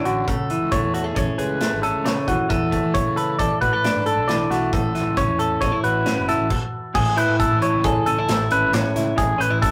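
A rough rehearsal-room recording with a moderate booth ambience opens this playful, bright cut from a longer math rock and midwest emo piece in A major at 135 BPM in 5/4, where a twangy, scooped, fingered clean electric guitar plays accompaniment up front beside a dark, picked clean electric guitar spinning spring-reverbed arpeggios, a round, fuzz-overdriven fingered bass punches in the background, and an airy, polished acoustic kit with a tight kick drives through Amaj7/C#, E7sus4 and A6 until a brief stop at 6.5 seconds gives way to a new section on Amaj7 at 6.9 seconds.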